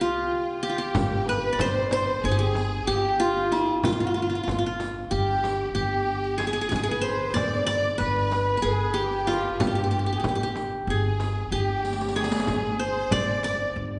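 A festive, passionate 9/8 groove at 187 eighth-note beats per minute drives this Turkish makam ensemble excerpt in G makam hicaz. The bright-edged, fingerpicked qanun carries the melody up front, shadowed on a second line by a dark, woody kamancheh with vibrato and portamento and a distant, lush violin section. A rich, very quiet cello drone holds only the opening second before the growly pizzicato upright bass, a close, dry frame drum and a riq with bright jingles join at about 0.9 seconds; a drum fill arrives at 11.8 seconds within the recital hall's wet reverb and softened top end.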